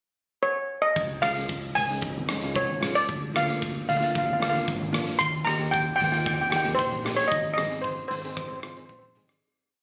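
A shimmering lead steel pan opens this festive, bouncy calypso in Db major at 113 BPM with a bright, up-front melody of short song-like motifs, and from 1.0 s the band joins in: a round, dark hollow-body electric bass plays a syncopated figure and a big rock kit with a tight kick, hi-hat and rim click lays down a calypso groove, a second, dry, close-miked double-seconds pan adds rhythmic triad chords from 1.2 s, and low-tuned, thin-skinned congas played with soft hands enter at 1.8 s to sit in the background. Everything is heard through a phone recording in a reverberant club with a muffled top end before fading out from 7.3 s to the end at 9.4 s.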